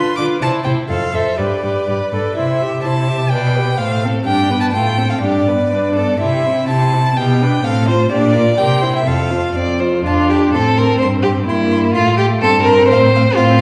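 An expressive, up-front cello anchors this quick, graceful classical-period string quartet movement at 126 BPM in 2/4, singing its bass line with vibrato and portamento under a clear, smooth solo violin melody that sits close and even in its upper register. A second violin and viola, each full-bodied and focused with vibrato, fill in the inner line and accompaniment. Taken from a longer piece, the cheerful passage moves with a rubato feel from C major into F major at 8.1 seconds before its opening idea returns at 10.1 seconds, all heard from further back in a scoring stage with a wet 1.6-second reverb.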